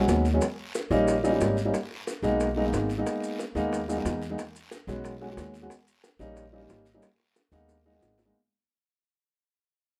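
This short, fading cut from a longer Afro-Cuban jazz piece carries light reverb, with a dark, mellow baby grand piano and a woody, bright upright bass sitting up front. The mood is fiery yet sultry, driven at a brisk 182 BPM in a straight 4/4 and set in G# harmonic minor. The piano carries the accompaniment in its middle register, moving through D#7, G#madd9 and B69 chords, while the plucked steel-string bass anchors the low end. Tight, high-tuned bongos played with soft hands, a raspy guiro and grainy maracas fill out the percussion, with the bongos and maracas carrying a vintage, band-limited character. The whole passage fades out from the start, and a drum fill arrives at 7.5 seconds just before the cut at 8.3 seconds.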